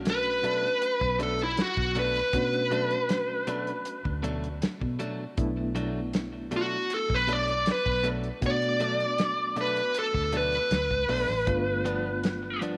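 Brooding and soulful, this 79 BPM straight-eighth soul blues in B minor, cut from a longer piece, features an up-front, smooth overdriven lead guitar soloing over Bm7 that shifts to G7 at 11.5 seconds, backed by a round, foam-muted fingered bass, a dry soul drum kit with a tight kick and rolled-off top, bright compressed stabs from a clean direct-recorded electric guitar with tape echo, and a gritty reed electric piano with fast tremolo, within a moderate echo chamber reverb.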